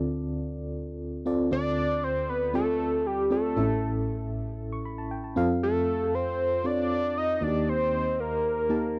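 Pop cut from a longer piece, moody and urgent at 117 BPM in a straight 4/4, where a full-bodied FM electric piano with tremolo opens alone, dark and up front across a broad range, before a fat, detuned sawtooth analog lead with a sub octave enters at 1.5 seconds carrying the melody with phaser, tape echo and vibrato, all over Dm7, A, F and Eb chords in a dry, close 1970s-style studio sound with a short booth ambience.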